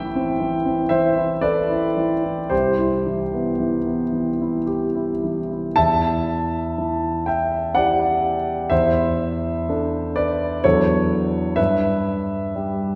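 An intimate grand piano sits up front in this nocturnal, mysterious excerpt of impressionist classical solo piano, its rubato phrases in 3/4 drifting through Am7 and Cmaj7 before turning at 5.8 s toward Em, C69/E, Bm9/E and G6, with long sustain, audible action noise and a wet concert-hall reverb.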